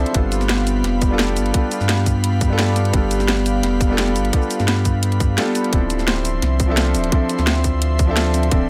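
Dreamy and lush, this short cut from a longer liquid drum and bass piece moves at 172 BPM in a straight 4/4. A grand piano with an open, long-sustaining tone plays accompaniment through dub echo, while an airy, breathy pad with a soft noise layer and chorus holds slow-blooming chords. In the background, a ringing acoustic Celtic harp spins arpeggios, also treated with dub echo. A deep, round sine sub bass sits up front with a mellow, sustained weight. The overdriven electronic drums are layered and produced: a tight kick, a cracking snare and bright hi-hats and shaker, all pushed forward in a light digital ambience. The harmony rests on G7 from 0.1 seconds before shifting to Dm9 at 5.7 seconds.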